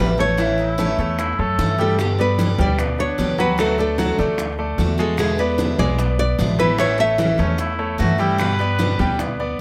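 Close, detailed microphones and light reverb frame this danceable, relaxed passage of Cuban son and guajira, cut from a longer piece and moving at 150 BPM in a straight 4/4. A fingerpicked nylon-string guitar with old strings carries the woody, classical-style melody through an analog delay, while a bright, full-bodied dreadnought steel-string guitar is picked underneath as accompaniment. A brilliant, intimate grand piano with audible action noise and long sustain spins arpeggios, and a growly, thumpy pizzicato upright bass anchors the low end over a progression of A, G, D, E7 and back to A and G. Ringing congas and round, low-tuned bongos, both played with soft hands, sit distant in a large room in the background. A clear, vintage-toned trumpet with scooped notes adds a second line through analog delay, appearing at 0.6 seconds and returning at 7.4 seconds after a drum fill marks the move into the next section at 2.0 seconds.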